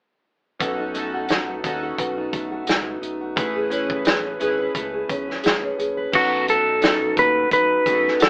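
Sunny and hazy, this indie pop and bedroom pop clip moves at 87 BPM with a gentle swing, shifting from B7 to Amaj9 and back. A loose, roomy acoustic drum kit with dark cymbals sits up front beside fingerpicked steel-string acoustic guitar with finger squeak and a warbly pitch drift, while glossy, chorused retro synth keys and a round analog bass, deep in the background, fill out the sound. At 6.2 s a clean, twangy lap steel guitar enters with a slide melody, and the band comes across through light reverb and an AM radio sound, as if playing live in one room.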